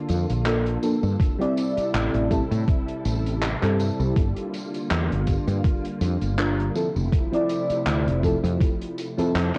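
Vaporwave with a faded, nostalgic mood, this excerpt moves at 81 BPM in 4/4 with a light swing on the sixteenths, cut from a longer piece and soaked in the worn, warbly pitch drift of old cassette tape under light reverb. A silky string machine holds slow-blooming sustained chords from the first moment, its ensemble chorus giving the pads a vintage shimmer as the harmony drifts from Bbmaj7 through Am7 and Gm7 to Fmaj7. Up front, a woody fretless electric bass sits growly and round, thickened by tube saturation, while a mellow FM electric piano enters at 0.5 seconds with soft, decaying tones coloured by lush chorus and tape echo. The open jazz kit stays dark and smooth in a small room, its handclaps, hi-hat and tambourine roughened by 12-bit sampler grit. An overdriven electronic kick, thumpy and forward in the mix, joins at 1.2 seconds and drops out at 8.8 seconds, carrying the same crunchy sampler grain.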